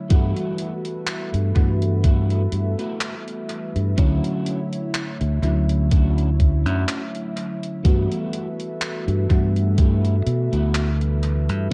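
Faded and nostalgic, this slow vaporwave fragment drifts at 62 BPM in 4/4 with a gentle 16th-note swing, moving from Gmaj13 to Dmaj9 and back. A lush, dreamy FM electric piano with a soft pad layer carries the accompaniment under a warbling, detuned tape-like pad, while a dark electric guitar at the edge of break-up plays a riff through analog chorus and delay. A fingered electric bass and a thumpy, gritty sampled kick sit up front until the kick drops out at 10.0 s, and a gated 80s drum machine adds handclaps and hi-hat, all within an echo-heavy, cassette-tinged mix.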